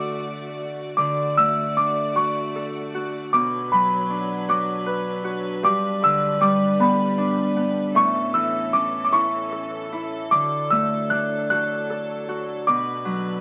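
A bell-like, delicate celesta sings a sleepy, gentle lullaby melody in D major from the very start, over fingerpicked, ringing Celtic harp up front and biting, bowed string chords with light vibrato, swaying in a rubato 6/8 at 52 BPM through D, Bm, G and A, all heard through light reverb and the crackle and dulled top of a very old 78 rpm record in this short excerpt.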